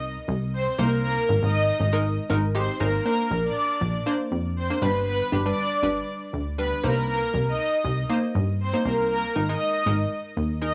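A straight dance-pop pulse drives this short cut from a longer piece, energetic yet bittersweet in mood. A punchy, funky analog bass opens at the start, its wave-folded filter pluck giving each note a fast attack and quick decay that sits up front in the low register. By 0.5 seconds a lush, airy supersaw pad takes the melody, a detuned unison stack with a sub octave and a soft, sustained bloom, coloured by cassette tape saturation and tape echo. At 0.8 seconds a round analog pluck joins as accompaniment, bright and chorused with a hint of noise, also carrying a cassette tape tint. The harmony moves through Cm7, Absus2, Bbadd9 and G before circling back, shifting into a new section at 3.1 seconds. A small-room, home-cassette ambience lends the whole track an intimate, slightly worn character.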